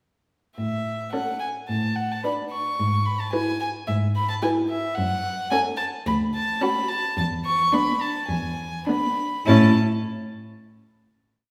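Heard from further back in a recital hall, this short, complete piece carries a generous wet reverb that lets the four gut-strung, period-style instruments bloom with a reedy edge. It is a quick, cheerful and lively classical-period movement for string quartet, with a somewhat uneven sense of beat. The first violin and the rich cello begin together at 0.6 seconds: the violin sings the melody up front with an airy, nasal bow, while the close cello supplies a pizzicato bass and sustained low notes. At 1.1 seconds the second violin and the smooth-topped viola join beneath, adding pizzicato accompaniment and sustained chords. The theme moves from A through Bm7/A, E/G#, F#m and Dmaj7 to E5 while gradually slowing down from 3.9 seconds, before settling on a final A chord at 9.5 seconds.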